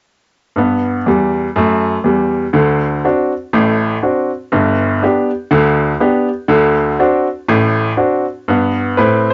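Swinging and exuberant, this short excerpt of stride jazz in G major at 121 BPM features a bright, woody upright piano playing solo from 0.6 to 9.3 seconds, up front with a short sustain in a small, moderately reverberant room, captured as a home cassette recording with a dulled top end, moving between G and D7 before settling on G at 8.5 seconds.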